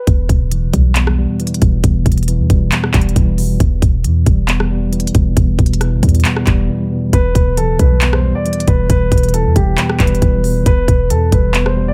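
A digital, echo-heavy ambience surrounds this eerie, melancholic trap excerpt in E minor, moving at 136 BPM in 4/4 with a half-time feel. A shadowy baby grand piano sounds a brief note at 0.0 seconds, then returns at 7.1 seconds to carry the melody between G4 and D5 with long sustain, softened by a low-pass filter and analog delay. Underneath, a clean tine electric piano plays mellow accompaniment between E2 and B3, sitting up front with the same filter and delay and a tone like it comes through built-in speakers. A deep, boomy 808-style bass with a sine core, a noise layer, a fast attack and a decaying tail anchors the low end from D1 to E2. A produced electronic trap kit, placed up front, drives the groove with a hard-clipped kick, crisp hi-hats, handclaps and rim clicks, while the whole passage rests on an E minor chord.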